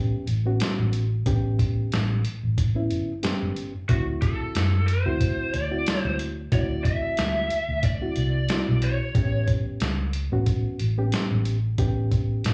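A dark, overdriven lead guitar through a small cranked amp carries the melody from 3.9 to 9.4 seconds, its lo-fi tone wrapped in plate reverb and slapback echo, in this gritty, laid-back straight-eighth soul blues excerpt in A mixolydian at 91 BPM. Underneath, a reedy, worn electric piano, slightly out of tune and heard through built-in speakers, comps over A9 and D9 chords with its own overdrive and echo, while a round, foam-muted electric bass sits punchy and up front. A muffled, pitched-down sampler-style drum kit with a thumpy kick and a hi-hat joins at 0.3 seconds, and the whole performance comes across like a live gig heard through the venue's PA with club reverb.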